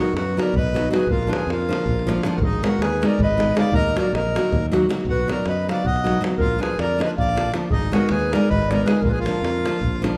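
A dark, distant clarinet sings the melody in a classical style over a reedy, close-miked accordion second line and a bright, fingerpicked nylon-string guitar, as a growly fingered electric bass and a tight, vintage-toned davul join within the first moments to drive this restless, virtuosic Balkan wedding-band passage in 7/8, all set in a reverberant recital hall and cut from a longer piece.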